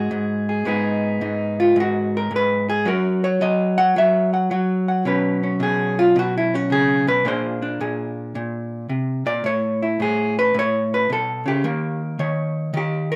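A lone vintage hollow-body jazz guitar opens the recording, playing solo from the first moment through to 13.2 seconds in this short piece cut from a longer performance. The style is solo jazz in G# minor at 109 BPM in 4/4, with a swinging eighth-note feel that gives the moody line a relaxed lilt. The electric guitar's tone is dark and clean, its picked notes sitting up front and ranging from G#2 up to F#5. The harmony moves from G# minor through a stretch of unaccompanied line, then on to Bsus2, A#9, Aadd9 and finally D#7, lending the passage a searching, shadowed colour. A moderate studio reverb gives the single guitar a gentle sense of room around its hollow-body voice.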